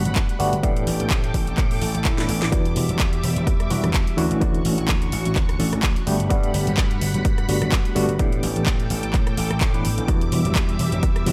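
The barky, reedy electric piano carries this filtered disco house excerpt, its bright tone roughened by light overdrive, fast tremolo, phaser and vintage 12-bit sampler grit as it plays accompaniment chords from E3 to B4. A lush string machine holds sustained chords reaching up to D6, its sawtooth ensemble thickened by chorus and a sub octave with a slow, mellow attack. Underneath, an amped, punchy slap bass anchors the low end. The punchy analog kick sits up front with studio reverb, and a layered house kit adds a cracking snare, bright overdriven hats, handclaps and rim clicks at 127 BPM with a light 16th-note swing. The piano, strings and bass are all low-pass filtered and pump with sidechain compression, as do the hats. A background swell rises at 1.8 seconds and a drum fill follows at 2.2 seconds, while the chords cycle through Gmaj7, A7sus4, Em7 and Dmaj7 for a nostalgic, sensual mood.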